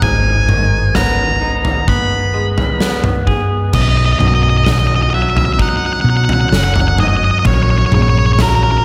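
A lightly reverberant small-room sound frames this euphoric, cinematic post-rock passage in B major at 65 BPM, where a dark, up-front octave-fuzz lead guitar with slapback echo carries the melody over twangy clean electric guitar arpeggios, a round, punchy hollow-body short-scale fingered bass and a big acoustic rock kit with crash, toms and a tight kick, the harmony shifting from G#m to B at 3.7 seconds.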